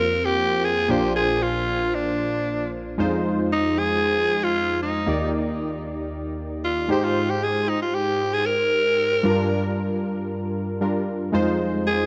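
A straight, even 4/4 pulse carries this uplifting, glossy pop passage, which is cut from a longer piece. Analog keys play the accompaniment throughout, their detuned sawtooth tone warm and round and treated with chorus, with a filter sweep and fast-attack notes that decay. Up front, a raspy alto saxophone carries the melody with a gritty, punchy edge, bright vibrato and scooped notes, trailed by tape echo. After an opening built on Fsus4 and Bbadd9, the saxophone moves into a solo at 3.0 seconds over a progression of Fm7, Ebmaj7, Abmaj7 and Gm7 before settling back on Fm7. A moderate, lush hall reverb surrounds the pair and gives the sound a spacious sheen.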